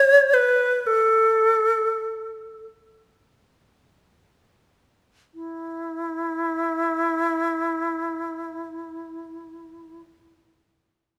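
In free time, this lyrical, nostalgic classical excerpt unfolds freely, slowing down through its opening 5.3 seconds before a new section begins and runs to 9.3 seconds. A solo alto flute carries the whole expressive passage alone, moving between E4 and C#5 with vibrato. Its tone is airy and bright, with soft attacks and lifted highs. The instrument sits up front in the mix, close and present. A moderate recital hall reverb, lasting about 1.6 seconds, gives the lone line a sense of space.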